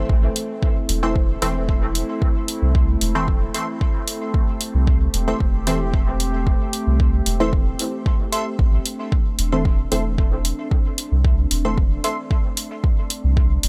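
A straight 4/4 pulse at 113 BPM drives this deep, hazy dub techno passage in A minor, cut from a longer piece and resting on a single A minor chord throughout. An up-front electronic kick drum with a deep, layered thump arrives at 0.1 s, joined by an electronic hi-hat, both carrying a small-room character, while a soft, round sub bass sits beneath them with sidechain pumping. A muted, detuned chord stab with a short, plucked filter decay pulses through chorus, phaser, cassette tape grit and dub echo before dropping out at 11.9 s. Above it, a quieter digital wavetable stab with a wave-folded, unison sheen enters at 1.0 s, its mellow plucks trailing dub echo in the upper register. A warbling, nostalgic lo-fi pad with a slow attack and long release holds sustained chords behind everything it touches, coloured by chorus, phaser and its own reverb, all framed in a digital ambience.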